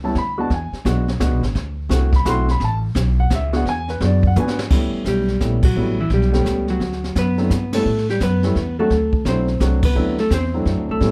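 A clean, dark-toned hollow-body electric guitar picks out the melody from 5.1 s in this swinging small-group jazz waltz excerpt, just after a short brush fill from the drums. Beneath it, a natural-sounding baby grand piano comps through dominant-seventh changes while a woody, thumpy gut-string upright bass plucks the low end. The brushed kit adds a high-tuned snare, boomy kick and dark cymbals, with band accents punctuating the second section in a light reverb and a mellow, warm mix.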